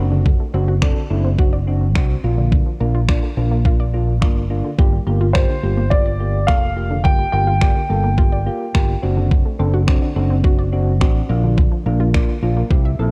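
Heard as a home recording on cassette in a digital ambience, this energetic, confident dance-pop excerpt at 106 BPM puts a layered, electronic pop kit up front, with a knocking kick and finger snaps run through cassette tape, beside a direct, amped fingered electric bass, while soft, round electric-piano-like synth keys with chorus and a detuned sawtooth unison pluck with analog delay in the background share the bass's sidechain pumping, and a dark, worn baby grand piano melody with long sustain enters at 5.3 s and stops at 9.0 s over chords moving from D7/F# through Bb to Gm7.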